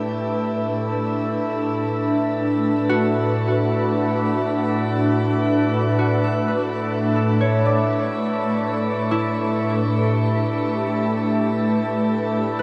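Awash in a deep shimmer reverb with an 8.3-second tail, this weightless, serene ambient fragment floats on a glassy, full-bodied FM pad of slow-blooming sustained chords, thickened by ensemble chorus and phaser, alongside a reedy, breathing pedal harmonium drone, while a mellow, ringing concert harp picks arpeggios through tape echo as the harmony drifts from A9sus4 to D69/A and back.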